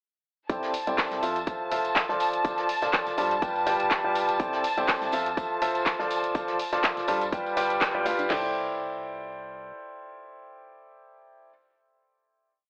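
A joyful, uplifting piano house piece opens at 0.5 s with a clear concert grand piano up front, playing a riff of dotted-rhythm chords through a low-pass filter and tape echo. Beneath it, veiled, muted strings hold a high note with vintage 12-bit grit, and a hollow, organ-like FM bass plays a funky syncopated line in the background; piano, strings and bass all pump against the sidechain. A layered house kit drives a four-on-the-floor kick with cracking snare, toms and crash, joined by the hats and claps of a tape-warm analog drum machine, a very quiet brushed breakbeat loop and a background tambourine, with the whole band hitting an accent at 7.8 s before the groove gives way at 8.3 s to a final chord, the mix framed by plate reverb and a thin telephone tone.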